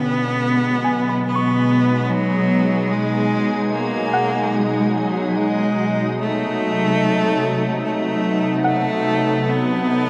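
A rich, focused bowed cello carries a reflective melody up front over a bright, organ-like pad of sustained chords, joined at 0.8 seconds by soft, round plucked arpeggios sitting dark in the background, all bathed in a huge wet reverb in this serene ambient piece at 73 BPM, moving from G#m7 to B7b9 at 6.2 seconds.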